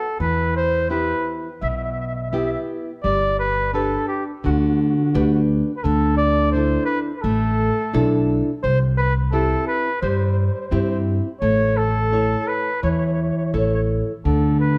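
A roomy flugelhorn with light vibrato sings a wistful, romantic melody over fingerpicked nylon-string guitar, complete with finger squeak, and a woody, growly pizzicato upright bass in this unhurried 85 BPM Italian folk serenade, which moves from E minor into G major at 3.0 seconds, its dark, warm production set in a moderate scoring-stage reverb.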